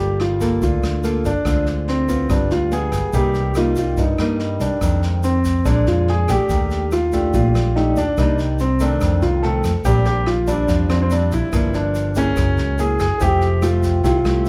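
A straight 4/4 bossa nova groove of brushed jazz drums with a boomy kick and a grainy, bright egg shaker in the background carries this wistful, smooth excerpt, as a dark, vintage baby grand piano sings the melody up front with long sustain and plate reverb over a small, fingerpicked nylon-string guitar, a growly, amped electric bass and a flow of extended minor-leaning chords, before a clean tine electric piano slips in behind at 13.2 s, the whole mix heard from further back in a moderate large studio room.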